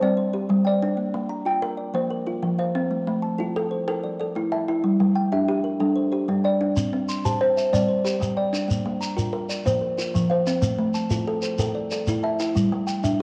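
Rippling and hypnotic, this cassette-recorded home excerpt of a southern African traditional mbira-style interlocking cycle moves at 124 BPM in a straight 12/8, with two soft, woody kalimbas, one hollow-boxed and the other an up-front, band-limited solid board, plucking short, mellow arpeggios through a wet spring reverb and small room until a grainy shekere joins at 6.8 seconds over chords cycling through G5, Bb, F5, Am and Gm.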